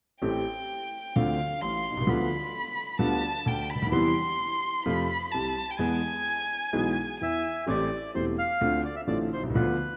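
A lush, wet hall reverb wraps this rough home-demo tango fragment, its dramatic, tense mood unfolding in A minor at 129 BPM with a rubato feel. A clear, smooth concert grand piano with deep bass and a vintage cast carries the accompaniment from the start, while a warm, expressive solo violin sings a bowed second line with vibrato and portamento until 7.6 s. The reedy, airy bandoneon takes the melody at 7.2 s, bright and up front as the harmony returns to Am7 and Dm7.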